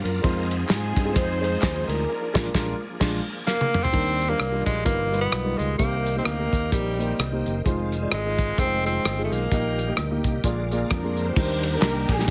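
A bright, forceful tenor saxophone carries the solo melody from 3.5 to 10.0 seconds in this jubilant, hopeful uptempo gospel excerpt with a swung feel, driven by a fat-snared soul drum kit up front, a punchy fingered electric bass and warm grand piano accompaniment. A shouting tonewheel organ with fast rotary speaker, overdrive and chorus vibrato holds sustained chords in the background, a very quiet, mellow French horn section adds its own sustained chords, and a dark, woody string section carries the melody near the opening and close. Tambourine and handclaps sit back at the start and finish, a band accent and drum fill lead into the second section, an organ fill rounds off that section, and the mix has a heavily compressed radio sound with light small-room reverb.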